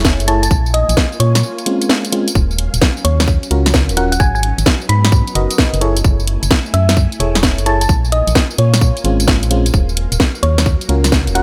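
Swung two-step drums at 130 BPM drive this late-night, soulful UK garage excerpt in Eb minor: a tight, tape-warm electronic kick and a cracking snare with hi-hat and tambourine sit up front, joined by a hollow, dark organ-like FM bass, glassy, bell-like FM electric piano stabs with chorus and digital delay, a round, tine-like thumb-piano-like synth pluck melody entering at 0.3 seconds, and silky string machine chords in the background with phaser, ensemble chorus and sidechain pumping, all set in a digital ambience over Gbm7, Bbm7, Ebm7 and Abm7 harmony with a brief break at 1.4 seconds.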